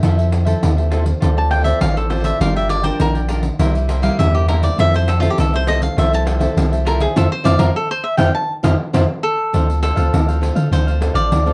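Samba and choro in F major at 101 BPM, this short, lively and playful cut from a longer piece moves in a straight 4/4 over Fmaj7, Dm7, Gm7 and C7 changes. A mellow, crisp picked cavaquinho carries the melody from 1.4 seconds, its solo running until 9.5 seconds, while a second, warm and up-front cavaquinho supplies accompaniment beneath it. A bright, fingerpicked nylon-string guitar with fresh strings adds classical colour and audible finger squeak, and a jingly pandeiro played with soft hands keeps the percussion. Underneath sits a deep, punchy sine sub bass with a pitch-drop attack and sustained notes, placed up front in the mix. The band hits accents from 7.2 to 9.5 seconds before a new section opens on Dm7, and the whole recording carries the worn, warbling pitch drift of old cassette tape inside a moderate studio reverb.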